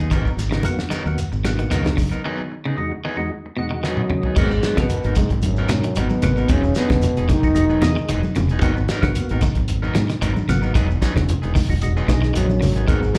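Intense and funky, this afrobeat cut at 113 BPM in G# minor rides a straight 4/4 groove, with an up-front cloth-damped drum kit of fat snare and tight kick and a warm fingered electric bass anchoring shekere, ringing congas, a twangy slightly broken-up guitar playing stabs, a bright clean guitar with harmonic tremolo playing arpeggios, and a round tonewheel organ through a slow rotary speaker, all over a G#m9 to Emaj9 progression. A break arrives at 2.2 seconds with an organ fill and a drum fill leading into the next section at 4.4 seconds. Just before it, from 3.9 seconds, a veiled bucket-muted trombone carries the melody while a raspy, growling bass trombone plays a second line beneath it, both with slapback echo, heard as a live gig through the venue's PA with club reverb.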